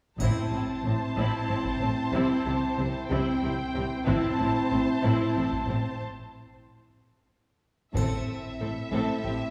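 Heard from further back in a wet scoring stage, this dark, epic orchestral film cue moves slowly at 62 BPM in 6/8 and A minor, alternating between Am and C. An expressive violin section with vibrato and portamento plays a second line over soft-attacked violas, distant cellos and smooth double basses, while a mellow, vintage French horn section holds sustained chords, a distant taiko ensemble with heavy sticks plays in a large room, and a close, dry triangle sounds at the start and near the end. After a chordless break at 6.0 seconds, Am returns at 8.0 seconds for a build-up, as a focused, smooth-topped violin section enters with a melody note at the close of this cut from a longer piece.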